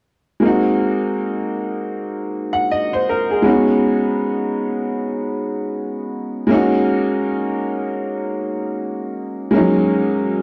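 Cosy and nostalgic, this hip hop excerpt settles into a relaxed 79 BPM groove in F# major with a gentle swing, tuned slightly below standard pitch. A lone upright piano carries the accompaniment from 0.4 to 10.4 seconds, its worn, woody tone sitting up front, a touch detuned and boxy, with long sustain ringing through moderate studio reverb. The chords move from G#7 to C#7sus4 and come to rest on F#69 at 6.5 seconds.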